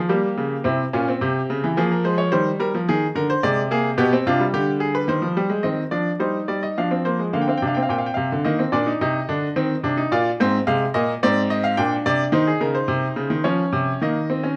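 A brilliant, up-front baby grand piano plays alone with long sustain through this elegant, stately baroque-style three-part fugue in 3/4, cut from a longer piece, its close, detailed sound set in a moderate recital-hall reverb as a second section begins at 5.6 seconds.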